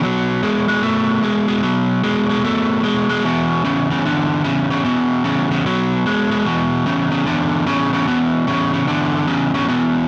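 An overdriven electric guitar carries this gritty, rollicking blues fragment on its own, playing for its full 10.1 seconds in a low register that stays between E2 and A3. Its picked tone is compressed and up front, with an analog delay trailing behind each phrase. The tempo is a brisk 149 BPM in 4/4, with a moderate swing on the eighth notes that gives the line its loose, rolling drive. Centered in E mixolydian and tuned slightly sharp of standard pitch, the part moves through B5 and E5 power chords, shifting into a new section at 6.5 seconds. A light reverb frames the sound, and the clip is cut from a longer piece.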